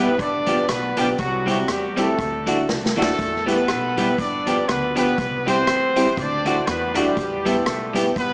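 Driving and energetic, this ska excerpt at 120 BPM in E minor swings its eighths as a clear, up-front horn section carries the melody with light vibrato and octave doubling, over a slightly broken-up electric guitar, a slightly detuned upright piano's stabs, a woody, thumpy pizzicato upright bass and an airy street-band drum kit with a boomy kick that enters at 0.2 seconds and fills from 2.7 to 3.2 seconds, with dub echo trailing the horns, guitar and drums, all set in a wet large studio reverb through a small speaker sound as the chords cycle G7, C, Dadd9 and Em.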